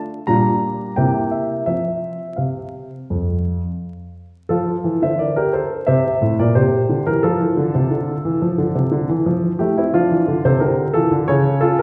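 Vinyl crackle and a wet recital-hall reverb, heard from further back in the room, frame this short cut from a longer classical-period piano sonatina. A solo concert grand with a deep bass and a warm tone sits up front, playing from F2 to Bb5 in an elegant, playful mood over chords such as Gm7/Bb and C7. A new section begins at 4.5 s, settling on F before moving to Dm and A/C# by 11.3 s.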